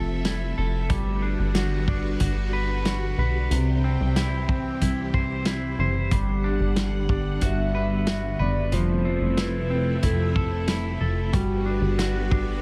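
A swirling string machine glides through phaser and ensemble chorus as a clean, picked electric guitar plays arpeggios and a plucky, wave-folded analog bass sits up front, with a muffled, lo-fi acoustic kit joining at 0.2 seconds in this ethereal, dreamy G major dream pop cut at 92 BPM. Over chords moving between Fmaj7, Gmaj7 and C, a detuned, warbling lead sounds briefly at the very start and then carries the melody from 6.1 seconds, its dark, nostalgic tone coloured by vibrato, chorus and tape echo. The kit's punchy kick and rolled-off top sit in a small room with light reverb, giving the whole fragment a hazy, vintage glow.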